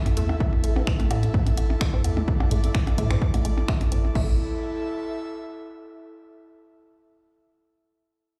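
Hypnotic and cool, this short cut from a longer minimal techno piece rides a steady 4/4 pulse with a slight swing on the sixteenths. An overdriven, layered electronic kick sits up front beside a round, deep analog bass with a nasal edge, both entering in the first half second, while a tape-warm analog drum machine adds crash cymbal, finger snaps and hi-hat. Electronic toms and percussion blips run through tape echo, and a squelchy, resonant blip pluck with a detuned sawtooth bite sits in the background, colored by phaser and digital delay. Above them an airy, breathy pad with chorus and a flickering, grainy granular texture hover from the very start, and the pad, bass and pluck all pump with sidechain. Around 4.2 seconds the grainy texture drops out and the beat, bass and pluck soon follow, leaving the pad alone until 6.0 seconds, all set in a large studio reverb that sounds like a big system in a bare room.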